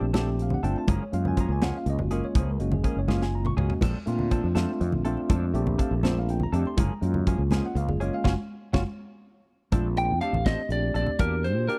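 Soaring and funky, this short electric jazz fusion excerpt in a straight 6/8 sets a tremolo-laden tine electric piano over a growly, up-front fretless bass, a punchy, airy studio drum kit, soft-handed bright congas in the background and clean chorused stabs from a semi-hollow guitar, with drum fills and a band accent arriving before a slightly broken-up lead guitar with slapback echo takes the melody at 10.0 seconds, all in a dry, close 1970s-style small-room sound.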